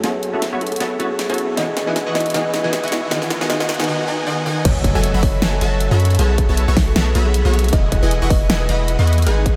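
Emotional and lush, this half-time future bass clip opens with a build-up in which a drum fill plays across the huge-snared big-room kit, a bright, detuned supersaw stab riff moves through a filter sweep, a very quiet riser gathers, and a clean, bell-like tine electric piano sits in the background until 3.9 s, before the drop at 4.7 s brings in a punchy, layered electronic kick and a soft impact beneath the woody, buzzing kalimba melody, its close-miked thumb plucks ringing dry, while a deep, mellow sine 808-style bass pumps up front and the whole mix floats in a dreamy, cavernous reverb.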